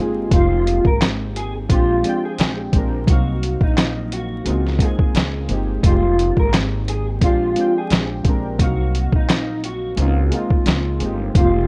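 A dark, slightly broken-up electric guitar carries the melody through a small old amp, softened by ensemble chorus and a low-pass filter, over warbling, detuned synth keys and a woody, thumpy pizzicato upright bass, with a sampler-style drum kit of muffled, pitched-down kick, snare, hi-hat and handclaps joining at 0.3 seconds. This melancholic, hazy lo-fi hip hop excerpt has a lightly swung feel and cycles twice through a jazzy progression of Fm11, Bb13, Ebm69 and Dbmaj13. The bass and compressed drums sit up front in a dry, rough home-demo mix laced with vinyl crackle.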